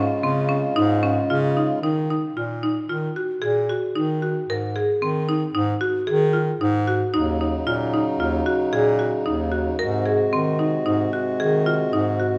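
A moderate recital-hall reverb gives this urgent, restless stretch of contemporary chamber music in 5/4 at 113 BPM a sense of space, set in Eb dorian and cut from a longer piece. A buzzing marimba struck with hard mallets runs bright, woody, airy arpeggios throughout, while a clear bass clarinet in a classical style carries the bass line up front. A reedy, breathing pedal harmonium sustains mellow chords, dropping out at 1.8 seconds and returning at 7.1 seconds as the harmony moves from Ebm through Ab7 to Ebm7.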